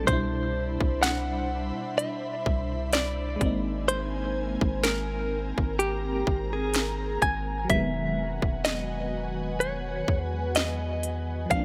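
A light digital reverb frames this tender, romantic contemporary R&B excerpt at a slow 63 BPM with a gentle 16th-note swing, where a clean, direct-recorded electric guitar carries the melody up front through tremolo and digital delay, an FM electric piano with tremolo and phaser accompanies beneath it, an ethereal, warbling pad drifts in chorus-thickened sustained chords, a deep sine 808 bass holds long mellow notes, and a trap kit with a hard-clipped kick, sharp snare and crisp hats enters at 0.1 s as the harmony moves from Cmaj9 to Abadd9 to Emaj9.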